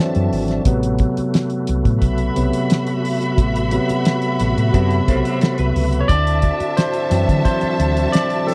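Lush 1970s-style soul at 88 BPM in A dorian, smooth and cinematic, with a barky, lightly overdriven tine electric piano soloing up front over a thuddy cloth-damped drum kit with a fat snare, a round, punchy hollow-body bass entering at 0.2 seconds, bowed strings with expressive vibrato, a fat tonewheel organ with key click and slow rotary speaker in the background, a very quiet ringing vibraphone ending at 5.6 seconds, and a picked, slightly broken-up guitar riff with tremolo from 4.7 seconds, all moving between D9 and Am69 in a dry, close studio sound.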